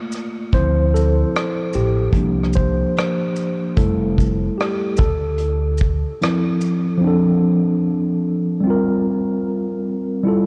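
Nostalgic and melancholic, this lo-fi hip hop fragment, cut from a longer piece, moves with a lazy swung sixteenth-note feel in four. A mellow, clean tine electric piano sits up front throughout, carrying a solo through the first section over a rootless Gm9 that settles onto Dm7 and drifts through C7sus4 and Fmaj9. A vintage brush drum kit of hi-hat, tight kick, rim click and shaker sounds close and rolled-off in a small room. A growly, thumpy pizzicato upright bass on steel strings joins at 0.5 s and adds a woody low end. The drums drop out at 6.9 s, leaving the electric piano alone for the second section as C7sus4 returns. Cassette tape grain and a low-pass filter dull the keys, and a huge ambient reverb soaks the whole dreamy mix in a long, hazy tail.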